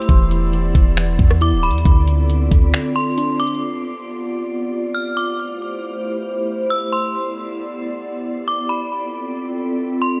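A half-time trap beat at 136 BPM opens this hazy, ethereal cloud-rap fragment in D dorian, its knocking kick, metallic hats, finger snaps and rim clicks sitting up front over a deep, boomy 808-style bass with a clean sine tone and a fast, decaying attack. Alongside them, a warbly, tape-like pad, also up front, holds sustained chords throughout, its detuned square and triangle tones carrying a nostalgic lo-fi grain, with chorus, tremolo, built-in reverb and a sidechain pump that gives it a gentle breathing motion. Muted, felt-like synth keys trace soft, intimate arpeggios with chorus and delay, while a metallic FM bell rings out an inharmonic melody high above, its long release trailing through chorus and delay. The bass drops out at 2.7 seconds for a brief break, and at 3.6 seconds the drums and keys fall away, leaving the pad and bell to float alone over the chords as they move from G7 through Am7 and Em7 to Dm7. 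Light reverb and a digital ambience wrap the mix in a soft, dreamy haze.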